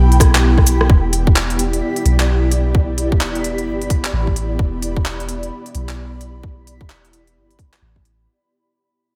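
A soft, round 808-style bass sits up front from the opening moment, deep and dark in the low E register, while an ethereal, airy pad holds sustained chords above it, moving from E minor to Em7 at 0.9 seconds. This short future garage excerpt in E minor runs at 130 BPM in 4/4 with a 62% swing on the sixteenths, and its mood is rainy and nocturnal. The mellow, detuned pad carries ensemble chorus, tremolo and its own reverb, and both it and the bass pump against the sidechain. A garage kit of crisp hats, cabasa, handclaps and rim clicks enters at 0.1 seconds, sounding re-recorded in a large room, and a tight electronic kick follows at 0.2 seconds, loudest in the mix and tape-warm. Far in the background, a reversed, granular texture swells on a single bright high note, dreamy and soaked in reverb. Light reverb glues the whole together, and a fade-out begins at 0.9 seconds and runs to the end.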